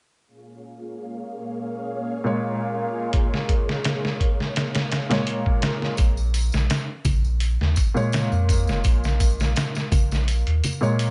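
Phased, chorused string-machine cellos open this brooding, cinematic trip hop excerpt in Bb minor at 84 BPM, sustaining chords that begin on Bbm7 under a filter sweep until 5.9 s, while a soft, felt-muted upright piano with audible action noise, tremolo and tape echo enters at 2.2 s, followed by a muffled, pitched-down sampler-style kit with a thumpy kick sitting up front; at 6.0 s a deep, round, tube-saturated dub sub bass and bright, close tambourine and congas join, all in a dry mix with its top end rolled off.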